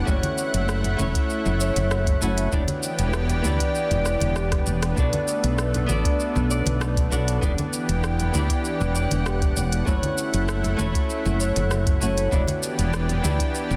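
A dark, fingerpicked flamenco guitar, a lush, detuned sawtooth pad with chorus and a woody fretless bass all sound from the very start of this relaxed, smooth sunset chillout excerpt. A thumb-plucked Celtic harp rings out arpeggios in the background, its notes carried by tape echo like the guitar's. The round, hollow-bodied fretless bass sits up front, while the slow-attack pad holds sustained chords through a gentle cycle of F#m7, Em7 and Bm7. A deep analog electronic kick and a produced R&B kit with smooth hi-hats, rim clicks and shaker join at 0.1 seconds, the kit's snare softly clipped. Bright, hard-handed congas come in at 0.2 seconds behind them, and a drum fill at 4.1 seconds briefly breaks the steady straight 4/4 groove. Light reverb and a small-room ambience frame a dense, heavily limited modern mix.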